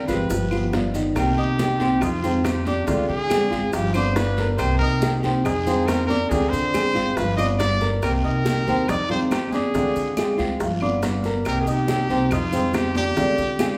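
A clear, up-front solo trumpet with smooth-topped vibrato opens this danceable, sultry Cuban son and guajira excerpt at 140 BPM in C minor, joined at once by a fingerpicked nylon-string guitar and a thumpy, woody pizzicato upright bass on gut strings, with a dark, intimate grand piano adding vintage arpeggios, its action noise audible, from 0.1 s. The percussion sits further back: bright, high-tuned congas, very quiet tight bongos, raspy guiro and grainy maracas, with dry woody claves entering at 0.5 s. The band plays live together in one room, bathed in a lush large-studio reverb, cycling through Cm7, Fm7, Dm7b5 and G7.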